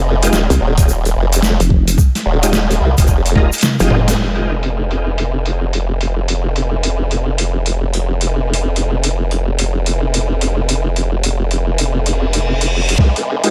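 This swaggering, funky glitch hop cut rides a swung 16th-note groove at 109 BPM in 4/4, set in F minor and opening on an Fm9 chord. Up front, a formant-sweep wobble bass built from a detuned pulse and sine wobbles through chorus and overdrive across the whole passage. For the opening drop, a nasal, resonant vowel-sweep wobble bass with tube saturation joins it alongside smooth tonewheel organ stabs spinning through a fast rotary speaker, sidechain pumping and a diffuse ambient delay. A grainy egg shaker sits in the background there too. A gritty, pitched-down boom bap sampler-style kit with a high-tuned snare, hi-hat and toms drives things, joined by a thumpy overdriven electronic kick before a drum fill closes the first stretch. From 4.2 seconds the harmony falls away, leaving the bass and a filter-swept kit until an electronic reverse cymbal rises from 12.2 seconds, and at 13.0 seconds the Fm9 returns with another fill under light reverb.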